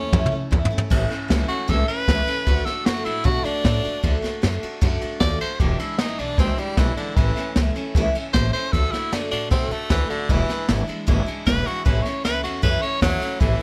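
A studio reverb surrounds this rollicking, rowdy rockabilly excerpt, cut from a longer piece, with the brush kit and saxophone sitting up front. A jazz brush drum kit opens with a fill in the first 0.9 seconds, its acoustic small-room tone dark and smooth, with dusky cymbals, a medium-tuned snare, a punchy kick, toms and a rolled-off top. A breathy tenor saxophone takes a jazz-style solo through to 13.4 seconds, clear and present with vibrato. Beneath it, a picked steel-string dreadnought guitar offers full-bodied, warm accompaniment from fresh strings, while a pizzicato upright bass with gut strings adds a woody, thumpy low end. The harmony cycles twice through A, D and E7 before returning to A.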